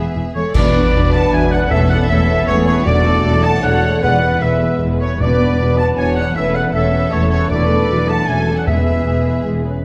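Soaring and heroic, this adventure film score excerpt moves at 155 BPM in 3/4 in E mixolydian. A lush, vibrato-rich violin section carries the melody over a second violin line, an expressive viola section with portamento, and a rich cello and double bass foundation on E, while mellow French horns and a bright, very quiet trombone section hold sustained chords. A clear, roomy solo oboe and an airy, distant flute ensemble add second lines, clear trumpets punctuate with stabs, dark clash cymbals and concert bass drum mark a full-band accent at 0.6 seconds, and close, dry timpani sound E underneath, all set in a dark concert hall with moderate reverb.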